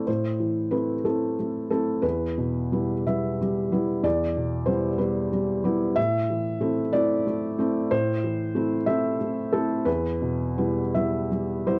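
A felt-muted upright piano plays alone for the full 11.8 seconds, its soft, mellow tone sitting close and up front. This short excerpt of neoclassical minimalist piano has a melancholic, intimate mood, moving at 62 BPM in 6/8 with a rubato feel. The piano spans from E2 up to E5, and the harmony rests in A minor, shifting between Am and Em. Moderate studio reverb gives the instrument a modest sense of space. Over the whole recording lies the character of worn, old cassette tape, with a warbling pitch drift that adds a fragile, faded quality.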